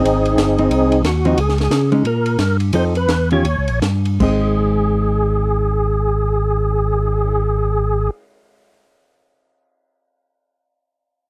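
A dry, close 1970s-style studio sound frames this short cut from a swinging, soulful soul jazz organ trio in Ab major, moving in a swung 4/4 at 153-181 BPM and slowing down between 1.4 and 4.2 seconds. A fat, up-front tonewheel organ carries the melody with percussive third-harmonic attack, key click, chorus vibrato and a slow rotary speaker. A second tonewheel organ holds the bass through its own slow rotary speaker, while a dark, compressed hollow-body electric guitar accompanies until 8.8 seconds and a compact cocktail kit sits low with dark cymbals, a high-tuned snare, a punchy kick, hi-hat, ride, crash and a cymbal swell as the chords move from Abmaj7 through Dbsus2, Gm, F7 and Eb7 back to Ab.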